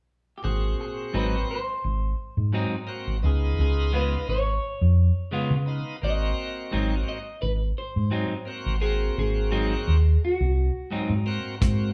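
A straight-eighth soul blues groove in 4/4 rolls along with a gritty, rollicking mood in this passage, cut from a longer piece. A twangy, slightly broken-up electric guitar through a small old amp carries the melody with a phaser. A bright tonewheel organ with key click, light overdrive and a slow rotary speaker shouts out the accompaniment. Up front, a dark, round hollow-body short-scale bass, played with the fingers, anchors the low end, and a clean picked electric guitar with spring reverb adds stabs from 1.1 s over harmony that moves from Ab7 to Db7 and back to Ab7. A dry soul drum kit with a tight kick appears only briefly at 11.6 s on hi-hat and kick drum, with the band playing live together in one large studio room with moderate reverb.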